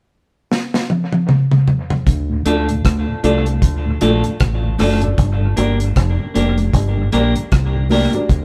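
A dry, dark reggae drum kit opens this short roots reggae clip with a fill from 0.5 seconds, its tight kick, medium-tuned snare, rim click, toms and hi-hat sitting up front with a rolled-off top. At 2.1 seconds the band settles into a laid-back, serious groove at 77 BPM in 4/4 with a swung sixteenth feel, moving from D minor to G minor at 5.2 seconds. A round, punchy fingered electric bass anchors the low end up front, while very quiet, high-tuned congas with thick skins add texture beneath. A clean, picked semi-hollow guitar carries dub echo, and a mellow tonewheel organ sits in the background with chorus vibrato, a slow rotary speaker and its own dub echo. A boxy, woody upright piano plays short stabs with audible action noise and a slightly detuned, intimate character, and light reverb gives the sense of a band playing together in one room.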